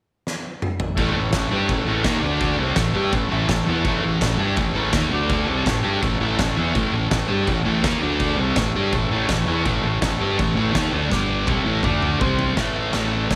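A straight 4/4 pulse at 166 BPM drives this swaggering, rowdy garage rock cut in A major: an oversized low-tuned drum kit with a boomy kick, fat snare and dark cymbals in a bright stone room enters with a fill at 0.3 s, a thick, double-tracked fuzz guitar riff sits up front from 1.0 s, a round, overdriven fingered bass fills in the background, and a buzzy vintage combo organ holds sustained chords with light vibrato and lush chorus, adding short fills, as the riff circles between A and D5 before a G5, D5, C5 turn arrives with another drum fill at 11.1 s.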